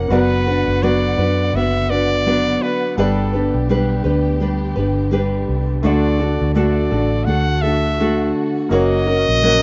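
A bright, fingerpicked nylon-string guitar and a round, foam-muted vintage electric bass up front play from the very start of this easy-going, sunny acoustic pop passage in G major at 84 BPM with a swung sixteenth feel, together with a very quiet, slightly detuned upright piano and a lush bowed string section sitting in the background. A punchy, close-miked trumpet carries the melody from 0.1 seconds with light vibrato over chords moving from Bm/F# through G and D to F#. The sound is dry and rough, like a home demo with a dull top end, and the clip is cut from a longer piece.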